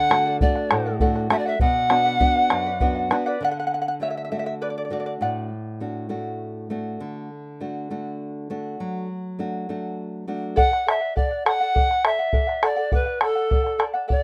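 Festive yet wistful, this short Andean folk excerpt moves at 67 beats per minute in a straight 6/8, its harmony turning from D to B minor. A reedy, airy pan flute carries the melody up front with vibrato and a soft attack, over a deep, dark bombo heard close and prominent. The fingerpicked charango adds a shimmering texture from its double strings, some doubled at the octave, and takes a solo at 3.4 s after the flute and drum have dropped out. Underneath, a full-bodied classical nylon-string guitar, fingerpicked with audible finger squeak, sits up front in the low and middle register until 10.6 s, when flute, charango and bombo return together. Light reverb surrounds the rough home-demo mix.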